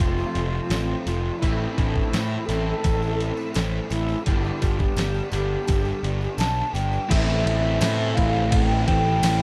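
Brooding and melancholic, this short cut from a longer shoegaze and dream pop rock piece moves at a straight 84 BPM in A minor, with a mellow, hollow concert flute carrying the melody through analog delay over an F, Am, G progression. Up front, a round, fuzz-soaked picked electric bass and a thumpy, tape-tinged 8-bit drum machine with a detuned character anchor the groove. Further back sit a crunchy overdriven guitar with analog chorus, a compressed overdriven electric guitar washed in reverse reverb, and a jingly, close tambourine from 0.2 seconds, and a bright, double-tracked cranked stack guitar joins them at 7.1 seconds as the harmony shifts to Am7, all inside a dark, dry production.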